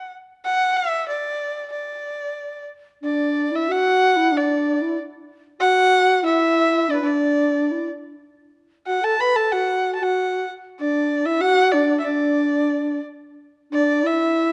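Chinese traditional chamber music in D gong mode, this festive, pastoral fragment moves at 93 BPM in 2/4 with a free, rubato feel. A single bowed erhu carries the melody up front from the opening, its earthy, rich tone shaped by light vibrato, portamento and a smooth top. At 3.0 seconds a low, end-blown bamboo xiao joins as a second line, pure and crisp in attack with its own vibrato, both set in light reverb within a dark, warm production.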